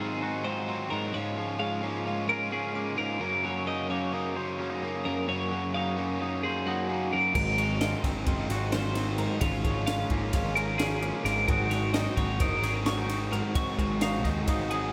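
A fast 9/8 pulse at 261 BPM in eighths drives this playful, intricate math rock and midwest emo excerpt, with three electric guitars sounding from the start: a twangy, compressed guitar under lush chorus carrying the accompaniment, a bright twelve-string spinning high arpeggios through analog delay, and a double-tracked overdriven guitar playing the riff. At 7.3 s a fuzzy, overdriven picked bass and a crisp fusion kit join, the kit's high-tuned snare and punchy kick sitting up front in a pumping small room. Chords move between Ab13, Db6/Ab and Ab7sus4, and a moderate plate reverb gives the whole mix a dreamy, soaked sheen.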